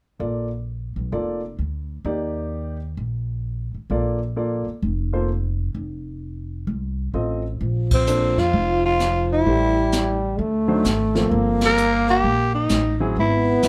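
A swinging 4/4 at 130 BPM in Bb major opens this sophisticated small-group jazz excerpt, with an up-front grand piano, intimate with audible action noise and long sustain, comping over woody pizzicato upright bass through Bbmaj7, Ebmaj7 and F7. At 7.6 seconds a distant, roomy brush kit with dark cymbals and a boomy kick enters alongside a whispered, breathy trombone second line, and from 7.9 seconds a raspy, growling tenor saxophone takes the melody with subtone and scooped notes as the changes move through Bbmaj9, Am7, D7b9 and Gm11. Band accents land at 7.8 and 11.5 seconds, all within light reverb.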